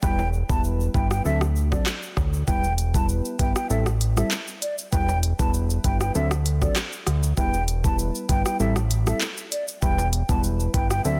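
Hypnotic and bouncy, this dancehall excerpt moves at 98 BPM in E minor, cycling through Em, D7 and Am7 after an opening break that lasts until 2.5 seconds. An airy, hollow silver concert flute carries the melody with vibrato and tongued notes through a digital delay, over soft, dark chord stabs thickened by chorus and a fat, detuned analog bass whose sawtooth tone evolves under a filter sweep. The electronic afro-pop kit sits up front with a knocking kick, smooth hats, handclaps, rim clicks and shaker, while a close, dry tube shaker and timbales played with hard hands stay in the background of a dense, heavily limited modern master with little reverb.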